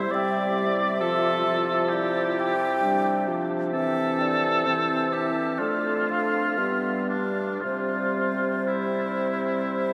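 Classical slow romantic movement for wind quintet in C major, tender in mood and unfolding with rubato at 56-68 BPM in 4/4, where an airy, straight-toned concert flute sings the high melody over a vibrato-laden oboe second line, a clear clarinet and a distant, roomy French horn in accompaniment, and a vintage-hued bassoon bass, all bathed in the huge, wet reverb of a vast, echoing space as the harmony moves through Dm/F and G7 before settling on C at 7.6 seconds.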